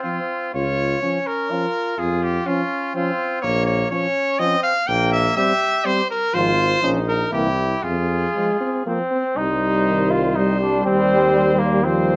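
A classical brass quintet piece in F minor and 3/4, taken from a longer work, moves at about 123 BPM with a rubato feel and a grave, solemn mood, tuned slightly low with A at 437 Hz. The trumpet carries the melody up front with a clear, lightly vibrato tone that still sounds distant and roomy, while the flugelhorn shapes a second line beneath it with a mellow, vibrato-rich voice. The French horn adds soft-edged, clear accompaniment, joined by the trombone's rounded, vibrato-tinged support, and the tuba enters at 0.5 seconds to anchor the bass with a warm tone. The harmony unfolds through Db, Bb minor and C7 chords before resolving to F minor, then shifts toward C minor in a contrasting passage from 9.4 seconds. A light reverb gives the ensemble a gentle sense of space.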